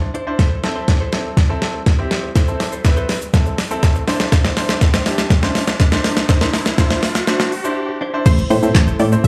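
A clear grand piano pumping under sidechain and a picked, compressed clean electric guitar riff with chorus and slapback echo open this upbeat, summery dance-pop excerpt over a soft-kicked, crisp-hatted electronic R&B kit with handclaps and shaker, through a build-up with a drum fill and a background riser from 2.0 seconds, until the drop at 8.3 seconds brings in a bright, detuned unison pluck melody, an airy, evolving sawtooth pad and a punchy, round FM bass, all heard as a live gig through a club PA with light reverb.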